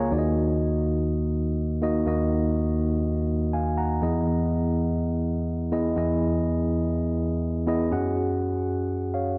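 This pop piece, cut from a longer work, has a glossy, nostalgic mood in a straight four-four pulse. A mellow tine electric piano carries it alone from 0.0 to 9.4 seconds, ranging from low bass notes up into its upper register. Its tone is warm, clean and direct, sitting up front, with a digital delay trailing behind the notes. The harmony moves from Ebm to Emaj7 at 4.0 seconds and then to Gbsus2 at 7.9 seconds. A moderate, lush hall reverb and a dark, warm production wrap the keys in a spacious glow.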